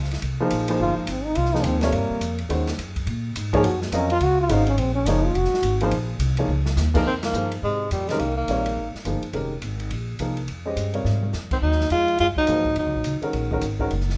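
A swinging 4/4 pulse at 211 BPM drives this cool, spiritual modal jazz excerpt in F phrygian, with woody, thumpy pizzicato upright bass on gut strings and an airy small-room drum kit of dark cymbals and a boomy kick, while an intimate baby grand with audible action noise and short sustain comps over Fm11 and Ebm11. A mellow, close-miked trombone with light vibrato takes the opening solo until a drum fill at 6.5 seconds brings in a whispered, up-front tenor saxophone with scooped notes and a smooth top, followed by a band accent at 7.2 seconds. The saxophone then carries the melody over the trombone's second line in two passages under light reverb.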